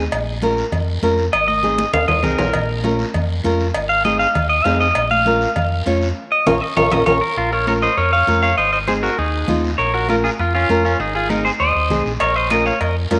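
A twangy, up-front clean electric guitar carries the lead from 1.3 s with spring reverb and slapback echo over a danceable, driving 199 BPM cumbia in Bb minor, backed by a full-bodied fingerpicked nylon-string guitar with audible finger squeak, a dark, round fingered electric bass, thick-skinned congas set back in the mix, a raspy, distant guiro, and ringing cowbell and timbales that drop out at 7.1 s and return at 12.2 s, all within a moderate echo-chamber reverb as the harmony alternates between Bbm and Ab.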